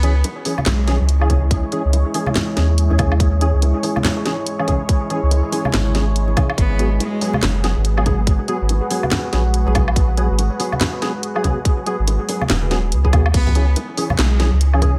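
Deep dubstep in C# minor at 142 BPM, this cut from a longer piece moves in a swung, half-time 4/4 with a meditative, cavernous mood, shifting from C#m to G#m7 at 6.6 seconds and back to C#m at 13.3 seconds. A round, soft dub sub bass sits up front throughout, joined from 1.3 seconds by a tight electronic kick, while a garage drum kit with a cracking snare, handclaps, hi-hat, crash cymbal and woodblock carries the groove in small room ambience. Bright bongos and congas played with soft hands sit in the background, sent through dub echo. A hollow, organ-like percussive stab with ensemble chorus and dub echo repeats across the whole passage, and a moody, evolving pad with slow attack and long release holds sustained chords until 13.3 seconds. In brief phrases a close, intense cello, bowed by a single player with vibrato, sings a melody between G#3 and B3, its notes trailing off in dub echo, all set in a light digital ambience.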